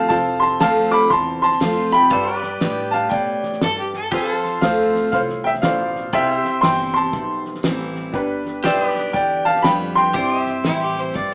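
A sunny, down-home honky-tonk groove in classic country style opens with a brilliant upright piano carrying the melody up front, while a second, worn and slightly detuned upright piano sits in the background with long sustain. Set in C major at 119 BPM in 4/4, the tune swings its eighth notes over a simple F, G and C progression. A picked jumbo steel-string acoustic guitar adds full-bodied accompaniment with fresh strings and audible finger squeak. A clean, twangy pedal steel guitar holds sustained chords, and a woody, thumpy pizzicato upright bass on gut strings sits low beneath a cloth-damped drum kit with a fat snare and tight kick. A rich, focused fiddle with light vibrato briefly steps up front with a second line at 3.6 seconds and again at 10.7 seconds, all heard as a band playing live in one room through a moderate studio reverb with a small-speaker character.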